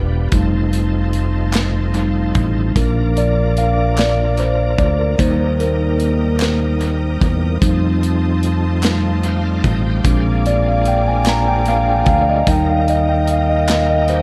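A mellow tine electric piano solos with dub echo over shouting, lightly overdriven tonewheel organ chords turning through a slow rotary speaker and chorus vibrato, dark, woody bowed strings and a growly, up-front fingered electric bass, as a tight-kicked studio drum kit with its own dub echo joins at 0.3 seconds and hollow background handclaps, also echoed, arrive at 1.5 seconds in this jubilant, hopeful slow gospel excerpt in 6/8, with the organ stepping out for a fill at 8.8 seconds in a dry, echo-heavy mix.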